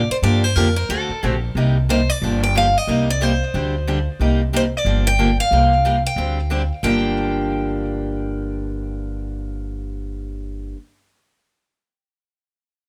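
Acoustic string swing in the jazz manouche style, this fiery, virtuosic excerpt races along at 182 BPM in G minor with a swung feel, moving through minor-seventh and suspended dominant chords. A bright, boxy parlour-style steel-string guitar carries the picked melody up front with a touch of tape echo, while a second picked steel-string guitar with fresh strings supplies accompaniment from 0.2 seconds. Beneath them, a woody, thumpy pizzicato upright bass with dark gut strings holds the low end, all set in a moderate studio ambience.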